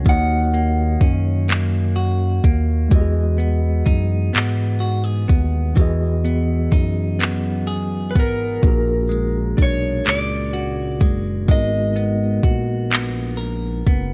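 Slow R&B in 6/8 at 42 BPM, this short cut from a longer piece has a yearning, sultry mood and a straight feel, moving through D#m7, Emaj7, A#7alt and G#m9. The drums sit up front with electronic, produced handclaps, soft kick and smooth hi-hat, carrying a vintage 12-bit sampler grit, while a detuned synth bass of sawtooth and square wave, dark and sustained with a fast attack and a moving notch, holds the low end up front as well. A mellow tine electric piano, clean and heard through its built-in speakers, supplies the accompaniment, and a clean, compressed hollow-body guitar plays a picked second line. The lead melody comes from an electric guitar through a small old amp, slightly broken-up and lo-fi with tape echo, sounding briefly at the very start and then returning from 8.1 to 12.5 seconds. The room is nearly dry, keeping the parts close and intimate.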